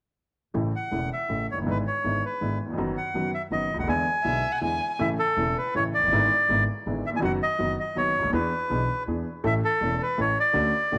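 A rubato 3/4 pulse at 162 BPM drives this playful, passionate tango excerpt in A major, cycling through A, E7/G#, B/F# and E7 with tuning set to A4 = 445 Hz. A clear, up-front upright piano and a dark, woody pizzicato upright bass on steel strings carry the accompaniment, while the reedy, airy bandoneon sings the melody from 0.8 s. Between 4.2 and 5.0 s a single bowed violin adds a warm, expressive second line with vibrato, portamento and a soft attack, and the ensemble sits in a moderate plate reverb.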